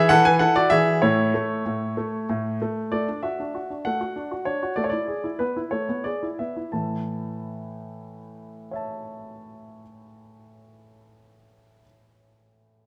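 Graceful and playful, this short cut from a classical-period piano sonatina in A major moves in 6/8 at 58-66 BPM, counted in dotted quarters, with a flexible rubato feel that slows down between 2.0 and 6.7 seconds. A solo baby grand piano carries everything from 0.0 to 12.9 seconds across a range from A2 to A5, its tone clear, polished and up front, tuned to A4 = 441 Hz. Close, detailed microphones keep the playing present while a moderate recital hall reverb adds gentle space, and the harmony passes from E to A, then through D and E over an A bass before settling back on A at 6.7 seconds.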